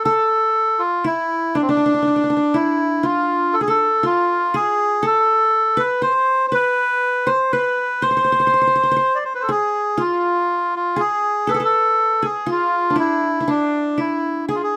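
In a straight ten-beat cycle, this hypnotic, soulful Arabic maqam ensemble fragment, cut from a longer piece, sets a reedy, breathy melodica carrying the up-front melody over a bright, plectrum-plucked qanun with triple strings that shapes a second line throughout its 14.8 seconds, all in light reverb.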